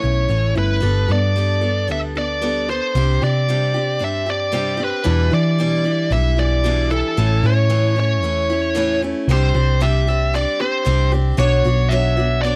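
A bluesy overdriven lead guitar carries the melody up front, its distorted tone keeping a warm edge as it sits in a fairly high register. Beneath it, a picked steel-string acoustic guitar supplies a bright, boxy parlour-style accompaniment with fresh-string sparkle and the occasional finger squeak. A hollow-body short-scale electric bass, picked and amped, adds a dark, round low end placed close in the mix. This folk rock and heartland rock excerpt has a jangly, open-road mood in a straight 4/4 feel, moving through Gadd9, Csus2, Em7 and A before shifting at 9.3 s to a closing passage on Csus2 and Bmadd9. The dry, close sound recalls a 1970s studio, with little reverb around any of the parts.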